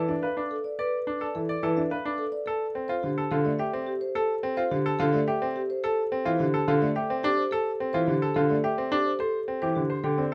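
A woody, rounded marimba played with soft mallets carries the melody over a deep, smooth concert grand piano accompaniment and brilliant, short-sustained arpeggios from a second grand piano, all three sounding together throughout this hypnotic, urgent minimalist pattern piece in 3/4, a cut from a longer work captured dry and close as the harmony moves from Bm7 to Dm7 and then to Am7 at 9.2 seconds.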